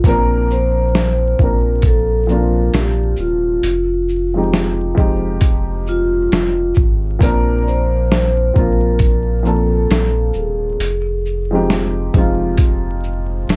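Lo-fi hip hop with a mellow, nostalgic mood, moving at an unhurried pace with a lazy swing on the sixteenths. A boom bap drum kit sits up front, sampler-style and pitched down with vintage 12-bit grit, its thumpy kick, medium-tuned snare, hi-hat and shaker sounding compressed and tape-warm, as if re-recorded in a small room. Underneath, a soft dub sub bass holds the low end, deep and round with a fast attack and sustained notes. A dark upright piano supplies woody, worn, slightly detuned accompaniment over chords moving from Bbadd9 to Fm7 and Bbmaj9. A vibraphone played with soft mallets and the motor off carries the metallic, ringing melody through an analog delay until 11.7 seconds, while the other parts continue to 13.6 seconds, and light reverb and vinyl crackle give the whole cut a dusky, lived-in feel.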